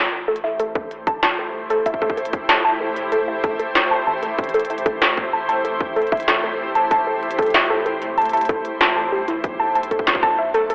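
This melancholic, cerebral IDM excerpt opens with a warbling, lo-fi pluck tracing arpeggios through chorus, cassette tape and analog delay over a rubbery, hollow square bass sitting dark and saturated in the background. Up-front industrial drums with a clanging snare and crisp hats join at 0.4 seconds, and a blurred granular pad enters at 0.6 seconds with cloudy sustained chords over Am7, moving to Bm7 at 9.4 seconds. A heavy electronic kick arrives at 0.8 seconds, with everything colored by a wet spring reverb and a dusty home-cassette, telephone-like sound.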